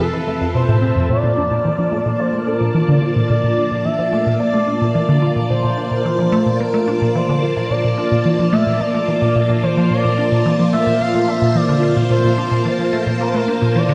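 The sound is dreamy and soaked in a long plate reverb, giving this cut from a longer piece of ambient, sequencer-driven space music a luminous, cosmic glow. At a straight 109 BPM in 4/4 and set in Bb lydian, it opens with a filter sweep on a synth arpeggio over an Fmaj7 chord before settling onto Bbmaj7 at 1.1 s, where it stays until the end at 13.9 s. Up front, a resonant blip pluck drives the riff with a juicy, squelchy square and sawtooth tone, detuned and layered with noise, its fast attack and short decay colored by phaser and delay. A string machine ensemble, also up front, holds lush, vintage sustained chords with a sub octave, soft attack, phaser and ensemble chorus. Alongside them, an expressive synth lead sings the melody in a smooth, dark sawtooth-and-triangle voice with vibrato, subtle chorus, cassette tape character and delay.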